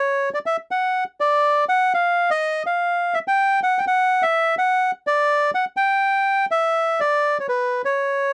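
A reedy bandoneon opens this brief tango fragment and carries it as the solo voice from 0.0 to 8.3 seconds. The mood is elegant and nostalgic, with a rubato feel stretched over a 4/4 pulse at roughly 124 BPM and tuning set slightly high at A4 = 441 Hz. The line sits in an upper register between B4 and G5, and the instrument's tone is warm. Placed up front, the bandoneon has a boxy small-room character that keeps it intimate and close. The recording is dry and close in a 1970s studio style, with little reverb, and the passage is cut from a longer piece.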